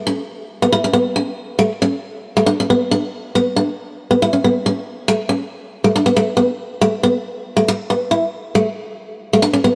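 Warm and carefree, this short highlife excerpt in A major moves at a straight 138 BPM in 4/4, with a bright, up-front picked steel-string acoustic guitar playing alone from 0.1 to 9.8 seconds in the range of A3 to E4, set in a moderate plate reverb with an auditorium-like sense of space.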